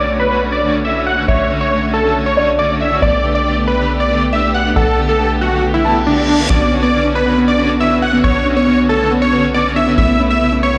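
Trance at 138 BPM in B minor, euphoric and driving, where a huge, detuned supersaw carries the up-front melody through a low-pass filter and dub echo, a dark, boxy grand piano plays a mellow second line in the background until 6.4 s, a smooth studio string section holds chords roughened by vintage 12-bit sampler grit, a punchy, nasal sequencer bass sits on B with tube saturation, an electronic reverse cymbal enters at 5.8 s, and a round, chorused analog pluck takes up bright arpeggios with dub echo from 6.6 s, all set in a vast ambient reverb that sounds like a big sound system in a bare stone room.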